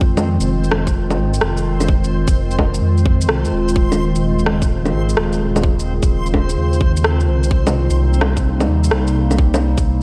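Future garage with a nocturnal, rainy mood, this swung excerpt drifts through Fm7, Eb9sus4 and Cm7 on a warbling, lo-fi tape-like pad with chorus, sampler grit and sidechain pumping, over a deep, rumbling detuned saw bass that is saturated, pumping and up front. A tight electronic kick drives the groove, joined at 0.2 s by electronic bongos, shaker and rim click. A faint reversed, granular texture swells in the background of a dreamy mix soaked in lush hall reverb.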